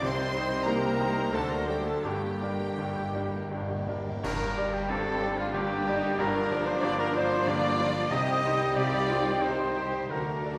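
A bright concert grand piano leads the melody up front from the start of this passionate, tragic romantic excerpt in rubato triple time, alongside a rich violin section in the background, while oboe, mellow clarinet and a second, smooth violin section carry a second line over viola section accompaniment, lush cello and expressive double bass sections hold the bass, French horn and clear trombone sections sustain chords, and a dark trumpet section adds stabs; cymbal swell, clash cymbals and concert bass drum sound until 5.5 s, timpani enter at 2.1 s, and a very quiet, hollow silver flute enters at 4.2 s, all set back in a reverberant scoring-stage space.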